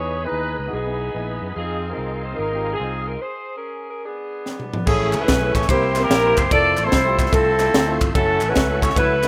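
Jubilant and soulful, this short uptempo gospel excerpt swings at 146 BPM in 4/4, its chords moving from Emaj7 through Bbm9 and Amaj7 to a closing F#m7. An up-front saxophone section carries the melody with a clear, vintage tone and light vibrato, while an intimate grand piano accompanies underneath, its action noise audible. A tonewheel organ sits in the background holding sustained chords, colored by key click, chorus vibrato and a fast rotary speaker, and a punchy, amped fingered electric bass anchors the low end. After a stop from 3.2 seconds, the crisp fusion drum kit arrives at 4.5 seconds with a fill, bringing a high-tuned snare, punchy kick, crash, ride and toms in a pumping small room, and a very quiet, hollow group handclap joins at 5.1 seconds. The whole has light reverb and small room ambience, with the rough feel of a home demo mix.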